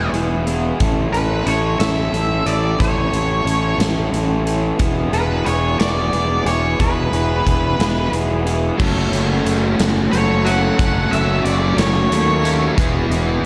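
An upbeat, carefree indie rock excerpt opens with a dark, fuzzed, picked lead guitar carrying the melody over a picked, up-front raw garage guitar riff with overdrive and slapback echo. Underneath, a fingered electric bass adds a round, punchy fuzz low end, while a big acoustic rock kit with bright cymbals, a medium-tuned snare and a punchy kick drives the slow 6/8 pulse at 60 BPM in dotted quarters. The harmony moves from E to A and back to E, then shifts to F#m at 8.8 seconds, where a bright, compressed distorted guitar joins with a chorus shimmer and slapback echo to thicken the riff. The lead guitar drops out at 12.5 seconds, just before the chords return to E. A lush hall reverb blended with a small room gives the whole a big arena sound.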